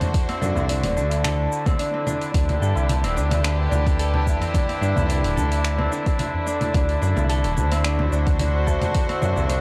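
Earthy and peaceful, this organic downtempo excerpt moves at 109 BPM in D mixolydian, drifting between D9 and Cmaj9/D chords. A reedy, gut-string chamber string section holds sustained chords with sidechain pumping while a fingerpicked Celtic harp rings out arpeggios through tape echo, and an up-front sawtooth synth bass, tube-saturated and also pumping, enters at 0.4 seconds. A punchy electronic kick joins at 0.1 seconds alongside a deep house kit of congas, finger snaps, shaker and dark hi-hats, with a high-tuned tabla tucked in the background, all captured in a dry, gritty hardware sound.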